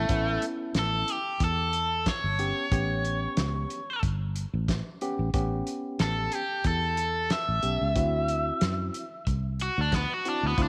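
A small-room ambience frames this gritty, rollicking straight-eighth soul blues at 92 BPM in A mixolydian, cut from a longer piece and moving from A7 to D7 at 8.0 seconds. Up front, a bright, compressed, overdriven electric guitar takes a picked solo throughout, touched with spring reverb. Alongside it sit a dark, round fingered electric bass, a worn, slightly out-of-tune tine electric piano heard through its built-in speakers, and an acoustic soul drum kit with a fat snare, tight kick and rolled-off top that enters at 0.1 seconds.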